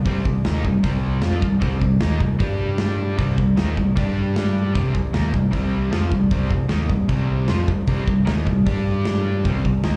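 Two overdriven picked electric guitars, one a bright cranked stack with harmonic tremolo and the other sludgy and up front, open this driving, aggressive hard rock excerpt in C minor at 153 BPM alongside a growly, amped bass, while a big-room rock kit with a punchy kick and medium-tuned snare joins at 0.1 seconds in a straight 4/4 as Cm and G5 alternate, all heard through a live club PA with moderate reverb.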